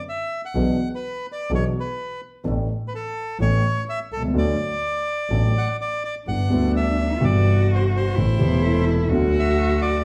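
A reedy bandoneon opens this nostalgic, elegant tango fragment with a rubato melody, soon joined by a dark, intimate grand piano with audible action noise and an earthy bowed double bass, before a cello with vibrato and portamento adds a second line from 6.3 seconds and a hollow, airy flute briefly joins at 8.4 seconds, all set back in a reverberant large studio.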